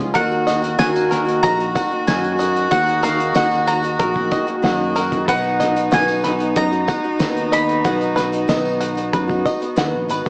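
Indie folk with a building arrangement and an uplifting, nostalgic mood, this short cut from a longer piece moves in a straight 4/4 over a shift from D#m to B at 5.3 seconds, with a bowl-back mandolin carrying the melody on double strings while a cello adds an airy, sul tasto second line with light vibrato. Beneath them a shimmering, octave-doubled twelve-string guitar and a reedy, breathing harmonium sit in the background, a twangy banjo plays fingerpicked arpeggios, a fingered electric bass holds the low end, and a cloth-damped drum kit thuds with a fat snare and gritty, muffled tone, dusted by a very quiet, jingly tambourine. The whole mix carries light reverb and studio ambience, heard through worn, warbling cassette tape with pitch drift and a small-speaker sound.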